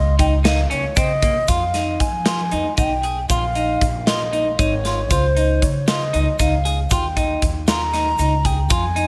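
A wooden baroque flute, airy and close-miked with a crisp attack and expressive vibrato, opens this progressive instrumental alongside a pizzicato upright bass with steel strings, the flute trailed by a touch of delay. At 0.2 seconds a big rock drum kit joins, sitting up front with a punchy kick, medium-tuned snare and hi-hat in a big room, together with a clean, picked semi-hollow electric guitar playing warm arpeggios and a grainy, bright egg shaker tucked in the background. The feel is driving and tense, moving in an uneven 7/8 at 233 BPM counted in eighths with a straight pulse. The harmony starts on Cm, then shifts at 1.5 seconds into a passage that moves through Fm7, Bbm7 and Dbadd9. Light studio reverb gives the band a shared space in this short cut from a longer piece.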